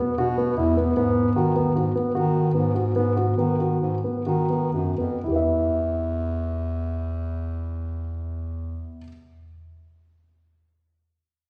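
A dark, mellow grand piano with audible action noise plays smooth, intimate arpeggios up front while a clear, classical-style bass clarinet carries the bass line in this restless, urgent fragment of contemporary chamber music in 5/4, which slows down between 1.8 and 5.2 seconds and moves from Esus2 and G#m7 to Em at 5.2 seconds, all heard from further back in a wet concert hall with a 2.0-second reverb.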